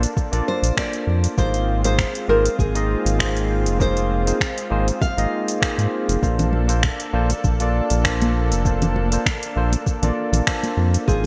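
A bright 1980s-style digital sheen and a moderate plate reverb frame this relaxed, blissful sunset chillout cut from a longer piece, moving at 99 BPM with a gentle 16th-note swing in Bb major over Bbmaj7 and Ab6 chords. A full-bodied, fingerpicked nylon-string guitar carries the melody with audible finger squeak, subtle chorus and delay until 5.9 seconds, while a barky tine electric piano, lightly overdriven through a combo amp with digital delay, accompanies and a lush, airy, detuned unison pad holds chords in the background. An up-front, round, deep analog bass anchors the groove beneath a soft, overdriven electronic kick and a smooth R&B kit of finger snaps, metallic hi-hat and shaker in a small gated room, and from 6.4 seconds high-tuned, damped congas join close and dry in the background.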